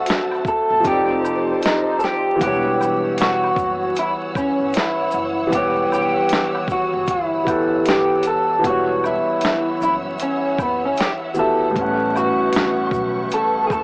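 A slightly broken-up electric guitar carries the melody through lush chorus and analog delay over a soft, felt-muted upright piano with audible action noise and distant bowed strings with vibrato, before a gritty, compressed sampler-style drum kit with a thumpy kick and an egg shaker and woodblock join, and a woody pizzicato upright bass enters at 0.7 s in this hazy, nostalgic lo-fi hip hop excerpt, all wrapped in cassette tape, vinyl crackle and a small-speaker sound.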